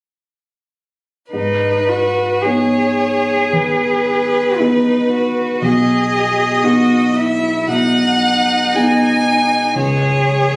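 At 1.3 s a piano trio enters together in G# minor, tuned to A4 = 435 Hz: a clear, close violin carries the melody with vibrato while a focused cello sings a smooth second line beneath it, and a dark, mellow concert grand with deep bass supplies the accompaniment. This elegiac, solemn romantic slow movement moves at around 53-59 BPM in 4/4 with rubato, all three parts up front until 10.6 s, in a passage cut from a longer work. Captured on a phone in a moderate recital hall with a 1.5-second reverb tail, it lingers on G# minor before shifting to C#5 near its close.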